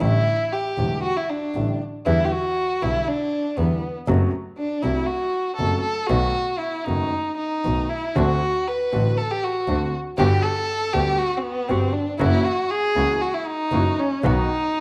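A bowed violin sits up front with a warm, smooth top, carrying an expressive solo line full of vibrato and portamento across the whole 14.8 seconds of this tense, sultry tango fragment. Set at 118 BPM in 4/4 but played with a rubato feel, the music moves through a chord progression that starts on A7sus4 and passes through Em7, F#dim, B7, D7, Gmaj7 and F#7 before landing on B. A concert grand piano supplies the accompaniment with a clear, intimate tone, deep bass and long sustain, its action noise audible up close. A single bowed double bass anchors the low end with a biting, nasal, earthy sound, an airy bow and light vibrato. From 8.2 seconds a very quiet chamber string section adds soft-attack stabs, played con sordino with a dark, veiled colour. An echo chamber reverb and small-room ambience wrap the performance in a wet but close space.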